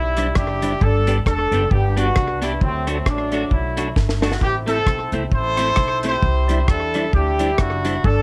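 A distant, roomy horn section carries the melody over a woody, thumpy pizzicato upright bass from the very start of this cheerful, upbeat ska clip, with a lightly swung feel and a Cadd9, G, D, Am progression. Just after, a dark, tight reggae drum kit with a high-tuned snare, rim clicks and a slapback echo joins in and plays a fill at 4.0 seconds. Further back sit a clean, compressed electric guitar with subtle chorus and mellow, percussive tonewheel organ stabs spun through a fast rotary speaker, all in a light reverb.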